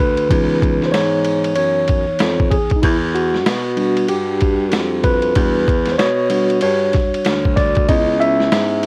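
Worn, warbling cassette tape with vinyl crackle and a light reverb frames this mellow, cool jazz-hop excerpt at 95 BPM with a swung 4/4 feel, where a clean tine electric piano takes the lead over C#m9 and Em9 chords, a baritone saxophone plays the bass line with vibrato and a subtone, and a gritty, pitched-down boom bap drum kit with a thumpy kick, high-tuned snare, hi-hat and ride cymbal comes in at 0.2 seconds.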